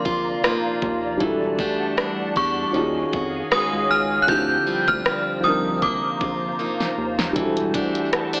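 Heard through a narrow AM-radio filter with light digital ambience, this longing, late-night contemporary R&B fragment at 78 BPM sets a chorused FM synth chime with tape echo over a muffled felt-muted upright piano, a hollow, warbling pad, a boxy picked archtop guitar with finger squeak, a round analog bass and a knocking, up-front electronic drum kit that adds a fill from 6.6 to 7.4 seconds, drifting through lush minor-eleventh chords.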